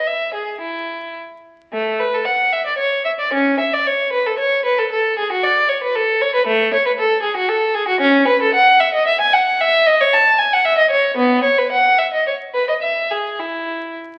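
A lone violin opens at once, through the crackle of a very old 78 rpm record, playing a baroque-style suite movement in a serene, dance-like triple metre. Its tone is rich and reedy, with the gut-string character and light vibrato of period style, bowed by one player who sits up front in the sound. The phrasing is flexible and rubato, moving across a range from A3 up to A5. A moderate recital hall reverb lends the solo line a sense of space around the surface noise of the old disc. The violin plays from the start until 14.0 seconds, and the recording is a fragment cut from a longer piece.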